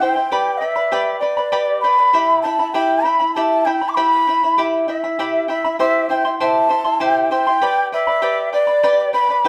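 Wistful and earthy, this short Andean folk passage, cut from a longer piece, sways in a gentle 6/8 as a large quena carries the melody with an airy, woody tone, tongued notes and vibrato. Beneath it, a bright fingerpicked charango shimmers on its double strings, some doubled at the octave, picking through a G, Em, C and G progression. The two players sound live together in a large studio room, with a moderate reverb lending the ensemble a sense of space.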